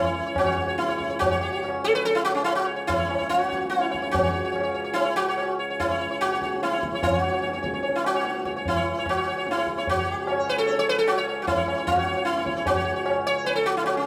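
In a straight 7/4 at 147 BPM that gradually speeds up, this meditative, longing Hindustani classical excerpt sets an up-front sitar, buzzing and shimmering with sympathetic strings, over a reedy, breathing pedal harmonium drone, while a low-tuned, short-ringing tabla sits distant from 0.4 seconds, all within a moderate recital hall reverb.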